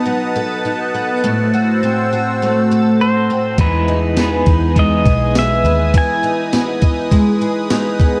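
An up-front, octave-doubled twelve-string acoustic guitar rings through this dreamy, ethereal dream pop excerpt in E major at 102 BPM, its shimmering picked arpeggios wrapped in ensemble chorus and tape echo over a swirling, detuned sawtooth pad drenched in phaser, chorus and shimmer reverb, as the chords move from B7 through Am6 to Emaj7. At 3.0 seconds a bright, clean pedal steel guitar takes up the melody with fingerpicks and slide, and at 3.6 seconds a gated 80s drum machine arrives with a thumpy kick, gated snare, ride and tambourine, joined by a round, foam-muted fingered bass and a slightly broken-up, twangy electric guitar sitting in the background under tremolo and lush chorus. The dark production sits in a moderate recital hall reverb.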